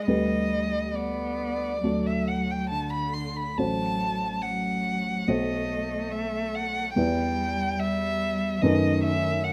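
From the first moment, a bowed violin sings a lyrical, expressive melody up front with vibrato, portamento and a smooth top, over a warm cello second line with its own soft-attacked vibrato and gliding portamento and a dark, mellow baby grand piano accompaniment of short sustain, in a serene, rubato slow romantic piano trio movement at 68-74 BPM in 4/4 that settles into E minor from 3.6 s, captured by close, detailed microphones in a moderate recital hall reverb, as an excerpt cut from a longer piece.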